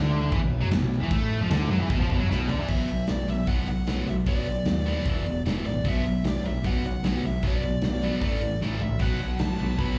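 Hard rock in B minor at 152 BPM in a straight 4/4, this menacing, aggressive clip is cut from a longer piece and sounds like a live gig heard through a club PA. A bright cranked stack guitar with overdrive and slapback echo drives the riff from the start alongside a very quiet crunchy overdriven guitar, while a sludgy double-tracked guitar sits in the background, dropping out at 2.7 seconds and returning at 9.0 seconds. Up front, a growling picked electric bass with overdrive anchors the low end, and a big acoustic rock kit with a punchy kick, medium-tuned snare, hi-hat, crash and toms enters at 0.3 seconds, its dark, rolled-off top giving a smooth, roomy weight. A drum fill marks the turn into the second section, just as a biting lead guitar with slapback echo enters at 2.5 seconds and carries the melody high above the riff. The harmony rests on B minor before shifting to E5, back to B minor, then A5 and B5 near the end.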